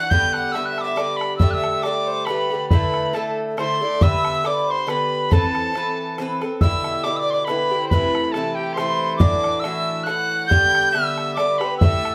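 Celtic folk waltz cut from a longer piece, wild, dark and lively with a light swing, where a reedy, pure tin whistle with vibrato and plate reverb leads up front over a nasal, gut-string fiddle second line, bright, metallic double-strung bouzouki picking through chords like G, Dsus2 and Amadd9, and a damped, tight bodhran entering at 0.1 s, all heard from further back in a wet studio room as the same section plays twice.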